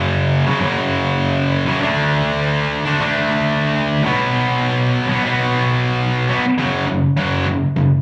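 The recording sounds like a live gig heard through the venue's PA, with a moderate club reverb giving the sound a raw, roomy edge. This short punk excerpt, cut from a longer piece, carries an urgent mood in a straight 4/4 feel. A sludgy, overdriven electric guitar, picked and double-tracked, sits up front and plays solo from 0.0 to 7.9 seconds, ranging from F#2 to D4. Its tone is thick and warm beneath the distortion. The guitar moves through power chords on F#5, D5 and B5, then returns to F#5 at 6.6 seconds as a brief new section begins.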